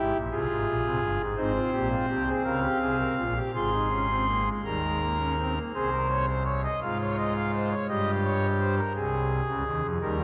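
A contemplative, solemn baroque-style four-part fugue for solo pipe organ in A-flat major, this short excerpt moves at a slow 56 BPM in a straight 6/8, its thick, romantically voiced foundation stops sitting up front and spanning G1 to C6 as the harmony passes from F minor through E-flat into a second section at 5.7 seconds that settles on A-flat, all bathed in a wet cathedral reverb with a 4.6-second decay.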